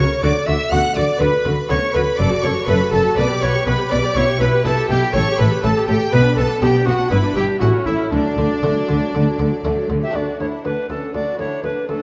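A bright, airy tenor recorder with a crisp, chiffy attack carries the melody in this stormy, dramatic baroque-style concerto movement, joined above by an intense, clear violin section and supported by a smooth second violin line in the background. A focused viola section and a muted, lute-like buff-stop harpsichord fill in the accompaniment, while a lush cello section and a distant, soft-edged double bass section anchor the bass until the basses stop at 10.0 seconds, just before a new section begins at 10.2 seconds. The whole is bathed in a reverberant recital hall with a dark production.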